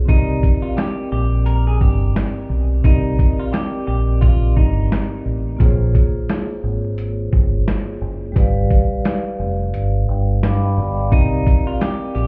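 A swung boom-bap groove at 87 BPM drives this dark, gritty hip-hop excerpt, anchored by an up-front, compressed, pitched-down sampler kit with a thumpy kick and high-tuned snare, beside a round, deep dub bass, all set in a digital ambience heard muffled through a wall, with club reverb and vinyl crackle. A metallic, ringing vibraphone with slow motor vibrato and cassette-tape colouring carries the chords from Cm9 through Bbm9 to G7, and plays a fill at 9.7 s while the kick falls silent. A clean, hollow-body guitar melody with spring reverb and tape echo plays until 5.6 s and returns at 11.1 s, where a barely audible, grainy tube shaker joins.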